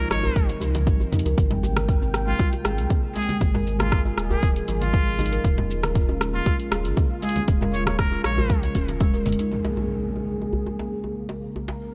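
A muted trumpet opens over a detuned sawtooth pad, playing a nasal, breathy jazz melody with vibrato and delay, while a hollow, woody kalimba arpeggio and a round sine sub bass pump against the sidechain in this earthy, spiritual afro house excerpt at 118 BPM in Bb dorian. An up-front, tape-warm electronic kick anchors a deep house kit with metallic, low-pass-filtered hats, rim click, shaker and toms, while very quiet, soft-handed congas and a tight, cracking djembe sit close and dry in the background, all in a small room ambience. At 9.5 seconds the groove falls away to an electronic impact, leaving the djembe and the chorused pad to ring out on a Bbm7 chord.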